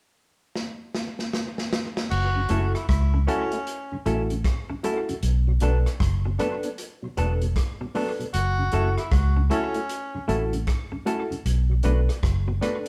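Laid-back and meditative, this roots reggae passage moves at 77 BPM in 4/4 with a swung sixteenth feel, settling in F# minor over a gentle sway between F#m7 and Bm7. A vintage drum kit opens alone at 0.6 seconds with a fill across crash, hi-hat, kick, rim click and snare, its dark cymbals and punchy kick sitting up front with a touch of analog delay. At 2.1 seconds the foam-muted electric bass arrives, round and amped, anchoring the low end as the loudest part, while a breathy tenor saxophone plays a whispered, intimate second line with scooped notes and vibrato until 10.2 seconds. A semi-hollow electric guitar adds clean, compressed accompaniment, and a barky reed electric piano punctuates with bright stabs, lightly overdriven and shimmering with fast tremolo through its built-in speakers. Underneath, a mellow tonewheel organ with slow rotary speaker and chorus vibrato hovers in the background, all captured as a band playing live in a moderate stone room.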